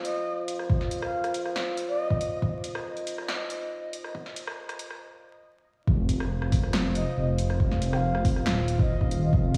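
Deep dubstep at 139 BPM in a half-time 4/4 feel, meditative and brooding, cut from a longer piece. A breathy, bamboo-toned shakuhachi with vibrato carries the melody in dub echo over a dark, chorused analog pad with 12-bit sampler grit, while an overdriven deep house kit with a punchy snare, handclaps, hi-hat and rim click builds alongside a filter sweep and an up-front electronic kick that enters at 0.7 seconds. After a break at 5.0 seconds, the drop at 5.9 seconds brings in a rumbling, detuned saw bass with tube saturation, all set in spring reverb and a stone-room ambience with vinyl crackle, as if played on a big sound system.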